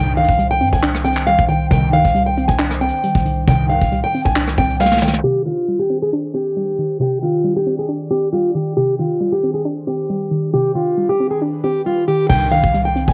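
Built on a half-time trap pulse at 136 BPM in C harmonic minor, this menacing, brooding hip hop excerpt opens on a Cmadd9 chord, with brushed vintage drums (tight kick, dark cymbals, rim clicks and handclaps) and a deep, boomy 808-style bass driving the first section until a drum fill at 4.8 seconds, both returning briefly at 12.3 seconds. Up front, a boxy, fingerpicked plugged-in steel-string acoustic guitar carries the melody through tape echo, over a soft, round pluck with chorus and a glassy, ethereal FM pad sustaining chords in the background. A fat, detuned polysynth adds stabs at the start and again at 12.3 seconds, while a filter sweep runs through the drumless middle section, all wrapped in small-room ambience and cassette-muffled home-recording grit.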